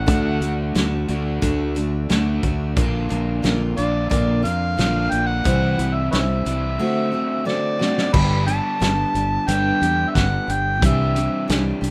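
Folk rock with a heartland rock lean, jangly and hopeful, this short excerpt puts a gritty, amplified harmonica up front carrying the melody with light vibrato, scooped notes and tongue slaps over a picked dreadnought acoustic guitar with plate reverb and finger squeak, a bright double-tracked crunchy electric riff, a round, punchy fingered bass and a loose, saturated indie drum kit with a fat snare and dark cymbals, moving from D through Bb and C to D7 before a drum fill at 7.5 seconds leads into a G to Cadd9 passage in a rough home-demo room sound.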